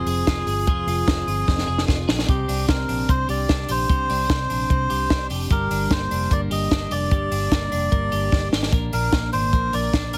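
Jangly indie pop with a wistful, bittersweet mood, this short cut from a longer piece sets a reedy, breathy melodica melody up front over bright, twangy twelve-string electric guitar arpeggios, a round, foam-muted vintage fingered bass with tube saturation, and a dry compact cocktail drum kit with a punchy kick and high-tuned snare that adds fills at 1.5 and 8.3 seconds, all in a close, heavily compressed radio-style sound.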